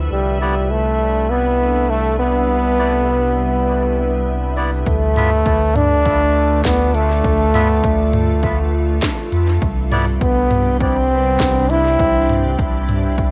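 A close-miked, classical-style trombone carries the melody up front through dub echo and cassette grain in this deep, meditative ambient dub excerpt, over a round sine sub bass with tube saturation and a pure, warbling organ-like pad bathed in ensemble chorus and reverb. Glassy drifting overtones hover in the background until 4.9 seconds, while a very quiet, reedy melodica adds breathy, nasal stabs. From 4.9 seconds a punchy, overdriven electronic kick sits in the background beneath a kit of woody snare, crisp hats and toms with dub echo, swung on the sixteenths as the harmony moves from Cmaj9 to Dm69 and back.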